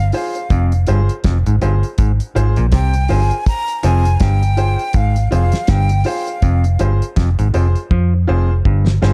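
Serious and laid-back, this short roots reggae cut from a longer piece has a swung, unhurried feel over a single F minor chord. A breathy jazz flute with vibrato and an unsteady tone carries the melody through tape echo until 6.8 seconds. Beneath it sit a round, foam-muted electric bass and a dry, fat-snared 70s drum kit, both up front, along with woody, slightly detuned upright piano stabs with audible action noise and a stringy, percussive clav riff. These parts continue to the end, with a drum fill arriving at 7.9 seconds, all in a dark, small-room production.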